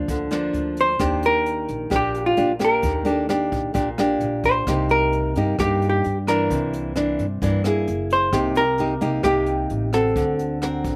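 Wistful and intimate, this short bossa nova clip moves at 131 BPM in a straight 4/4, tuned to A4 = 441 Hz. Up front, a warm, fingerpicked classical nylon-string guitar carries the accompaniment with a touch of slapback echo. Beneath it, a pizzicato upright bass with steel strings sounds woody and dark, while a brushed jazz kit with a boomy kick, hi-hat and rim click sits in a small-room tone. At 0.8 s a vintage hollow-body electric guitar enters with the picked melody, dark and clean and placed close to the listener. The harmony moves from a rootless Gm7 through Ebmaj7, Cm7, C9, F#9 and Eb6 before settling on D7b13, all captured outdoors with little reverb.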